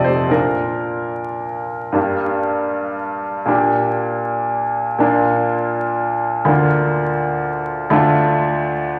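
A clear, woody upright piano sits up front with long sustain in this passionate, lyrical romantic character piece in G minor, moving in a rubato 6/8 at 72-84 BPM through a short opening idea before a longer second passage from 2.0 seconds, its polished tone ringing into a recital hall reverb alongside a layer of vinyl crackle in a fragment cut from a longer work.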